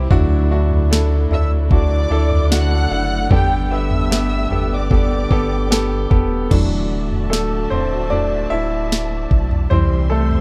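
A straight 4/4 pulse at 75 BPM carries this tender, emotional pop ballad in D mixolydian, cut from a longer piece. A thick, saturated sub bass sits up front from the start, and an electronic R&B drum kit enters at 0.1 s with a knocking kick, sharp snare, toms and crash cymbal. A polished concert grand piano plays the accompaniment, while a fingerpicked plugged-in steel-string acoustic guitar adds woody arpeggios in the background and a studio string section holds lush sustained chords behind them. A bowed violin section with vibrato carries the melody from 1.3 to 6.1 s, and from 6.5 s the piano takes a solo as the harmony moves from Dadd9 and Gadd9 back to Dadd9 and on to C. Small room ambience wraps the whole in a dark, warm production.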